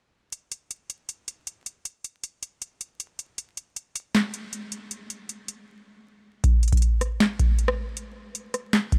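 A booming analog drum machine carries this dark, melancholic hip hop excerpt at 157 BPM in a half-time feel, its deep kick, tonal snare, metallic hi-hat, handclaps and rim clicks sitting dry, overdriven and up front from 0.3 seconds. A break at 5.7 seconds opens into a new section at 6.4 seconds, and the whole cut is coated in vinyl crackle with little room sound around it.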